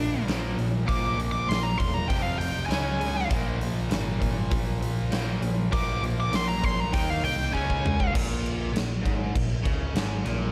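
A big arena sound with a lush hall reverb frames this powerful, swaggering hard rock cut at 99 BPM in 4/4. Up front, a warm, bluesy overdriven lead guitar plays a solo until 8.1 seconds, over a punchy, bright-cymbaled arena drum kit, a growly picked bass, a double-tracked distorted electric guitar with slapback echo that also stops at 8.1 seconds, and a cranked stack guitar riffing in the background. A drum fill from 7.5 seconds leads into a new section, where the chords move from Db5 to Absus24.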